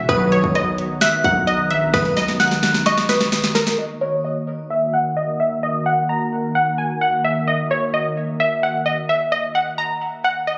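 Dark and hard-hitting, this half-time trap excerpt at 130 BPM in Eb phrygian sets a crystalline, detuned wavetable pluck melody up front over a smooth sawtooth pad, with chorus and low-pass filtering on both and tape echo on the pluck. Over a Bmaj7 chord, a punchy, heavy sine 808 bass sounds until 3.3 seconds, while an FM synth bell second line with chorus and tape echo and an up-front trap kit with a hard-clipped kick, sharp snare and bright hats play until about 3.8 seconds, the drums ending on a fill. At 3.8 seconds the harmony moves to Ebm as a filter sweep runs to the end, and the phone-in-the-room capture adds club reverb, compression and a muffled top end.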